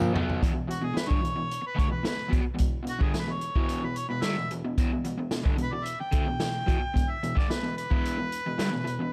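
A straight 4/4 pulse at 110 BPM drives this raw, rowdy garage rock excerpt, cut from a longer piece, which opens on a drum fill across the first 0.4 seconds from a vintage acoustic kit with a punchy kick, a medium-tuned snare, hi-hat and toms, sounding natural in a studio room with a rolled-off top and sitting up front. An electric guitar plays a crunchy, overdriven riff from the start, picked and double-tracked, bright and forward in the mix, ranging from E2 to B3. At 0.7 seconds a mellow harmonica enters with the melody between F#4 and G5, carrying a light vibrato and an overdriven, vintage grit in a pop-style solo role. The chords move from B5 to E5 in the opening moments, settling into a single section from 0.4 seconds to the end at 9.1 seconds. Light reverb and studio ambience surround the band.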